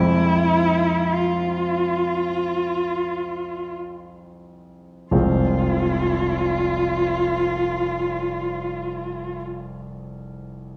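A bowed solo cello with vibrato and portamento sings a yearning, expressive melody over the clear, deep-bassed accompaniment of a concert grand piano in this melancholic romantic classical duet in F minor. It is cut from a longer piece and moves in free time, slowing down through its first 5.1 seconds. The cello falls silent at 9.4 seconds while the piano carries on to 10.8 seconds, and both sit up front within a reverberant recital hall that is heard from further back in the room.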